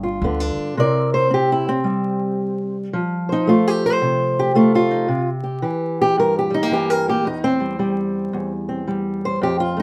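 A fingerpicked old ladder-braced acoustic guitar and a thumpy pizzicato upright bass open together on a G7 chord, and the bass drops away at 0.6 seconds. This gritty, soulful acoustic country blues in C mixolydian moves at 111 BPM in 4/4 with a swung eighth-note feel. From 0.8 seconds the guitar carries the melody alone as a solo, passing through C7, F and back to C7. The guitar sits up front, and its old strings give it a dark, woody, boxy tone. Light reverb and a layer of vinyl crackle lend the sound an aged character in this short cut from a longer piece.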